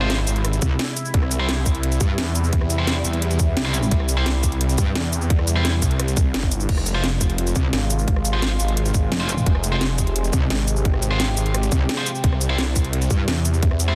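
A snarling, detuned saw bass, picked stabs of bright distorted electric guitar with digital delay, and a resonant, evolving pad with chorus and sidechain pumping open this dark, mechanical drum and bass fragment in F harmonic minor at 173 BPM over Fm and C chords, with an overdriven electronic kit of cracking snare, hi-hat, cabasa, rim click and crash arriving almost at once, a tight layered kick joining at 0.6 s, and a metallic FM wobble bass with tube saturation cutting in from 0.6 s to 4.9 s and again from 7.6 s, in a dense, heavily limited modern mix.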